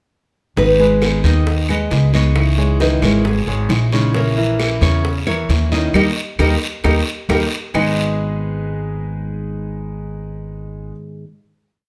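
A thumpy, up-front upright bass plays a tumbao that anticipates the chords under a fingerpicked nylon-string guitar melody with plate reverb, a piano montuno in octaves, a boxy parlour steel-string strummed with muted slaps, tight high-tuned bongos, raspy guiro and distant woody claves in this danceable Cuban son and guajira in G# harmonic minor at 133 BPM, with a band accent and drum fill leading to a final G#m chord at 7.7 seconds that the steel-string holds until 11.3 seconds.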